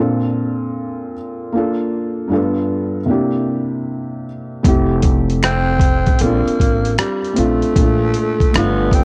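Wrapped in worn, warbling cassette tape with light reverb and small-room ambience, this dreamy, mellow, swung lo-fi hip hop excerpt opens on a soft, boxy felt-muted upright piano playing alone, before a gritty, compressed sampler-style drum kit with a thumpy kick, hi-hat and rim click arrives at 4.6 seconds, joined at 4.7 seconds by a woody pizzicato upright bass, and from 5.4 seconds a breathy, raspy tenor saxophone with vibrato and scooped notes takes a growling solo lead over a very quiet, dry finger snap.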